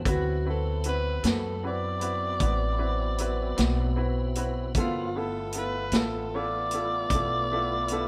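A growling tenor saxophone carries the solo melody throughout this swaggering, soulful slow blues excerpt in 12/8 at 51 BPM, its raspy, breathy subtone marked by vibrato and scooped notes. Behind it, a woody, thumpy upright bass and a punchy, up-front vintage drum kit of kick, snare and hi-hat ground the groove, while a clear, intimate upright piano with audible action noise offers accompaniment. A lightly overdriven tonewheel organ with slow rotary speaker and chorus vibrato holds sustained chords in the background as the harmony moves from D13 to G13 at 4.8 seconds, all within a moderate stone room.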